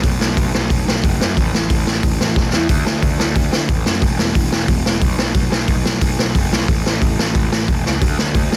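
A dry, dense and heavily limited mix opens this short punk rock cut, rebellious and energetic at 181 BPM in a straight 4/4. A raw garage drum kit sits up front, its boomy kick, medium-tuned snare and hi-hat captured in a small room with a gritty, saturated, rolled-off character, and fills land around 2.4 and 7.8 seconds. Beside it, a picked electric bass growls through fuzz and overdrive in a bright, direct-amped tone, playing low from E1 to F#2 for the full 8.6 seconds.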